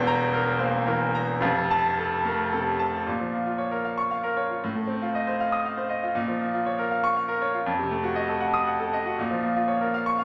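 Classical virtuoso piano study in 6/8, agitated and stormy, moving at roughly 71-80 BPM in dotted quarters with a free, rubato feel, heard as a short cut from a longer piece. A bright, brilliant grand piano plays alone and up front across a range from E1 to Eb6, its open tone and long sustain carried by a wet recital hall reverb. After an opening diminished chord, dominant harmony, including an F7b9, pulls repeatedly back to B-flat minor once the second section begins at 3.1 seconds.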